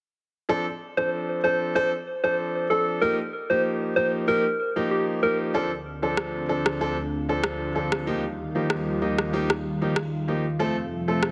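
A clear grand piano opens this sultry, hypnotic dancehall excerpt at 0.5 seconds, playing natural, up-front accompaniment in D minor at 95 BPM in a straight 4/4, tuned to A4 = 437 Hz. Moments later a soft, round FM synth lead carries the melody with keys-like, fast-attack notes that decay gently, shimmering with chorus and digital delay. At 5.5 seconds the lead gives way to a lush unison pad, a thick, warbling, vintage blend of detuned sawtooth and square waves that swells in slowly and sustains chords with a long release, touched by chorus. An electronic rim click joins the piano and pad at 6.2 seconds, adding a produced, percussive texture. The harmony moves between Dm7 and Ebadd9 before settling on F, all set in a moderate plate reverb within a dense, heavily limited modern master.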